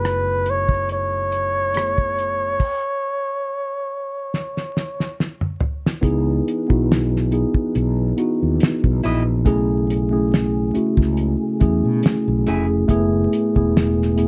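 A vinyl-crackled short room frames this smooth, late-night neo-soul R&B piece in C# minor at 70 BPM with a lazy sixteenth swing, where a breathy flugelhorn with light vibrato sings briefly over mellow tine electric piano, round fretless bass and a cloth-damped, thuddy drum kit with a fat snare, and after a stop and drum fill the band returns at 6.0 s with a faint flute-like tonewheel organ on slow rotary, joined at 9.0 s by a slightly broken-up, lo-fi guitar line with subtle chorus.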